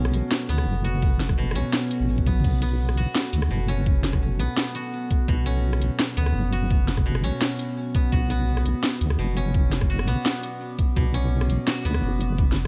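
A deep, wobbling sawtooth bass sits up front in this tense, heavy half-time drum and bass excerpt, its sine-rounded body compressed and thickened with chorus. Behind it, a dark ambient pad holds sustained chords in the background, its warbling, vintage character shaped by a slow attack, long release, built-in reverb and sidechain pumping. A koto plays arpeggios with fingerpicks, its woody, acoustic tone passed through a low-pass filter and tape echo. The overdriven drum kit enters at 0.1 s with a cracking snare, bright hats, rim clicks, toms and crash cymbal, prominent in the mix. A knocking electronic kick joins at 1.0 s, and a drum fill arrives at 2.3 s, both drum parts re-recorded in a small room and set within a digital ambience that keeps the top end subdued.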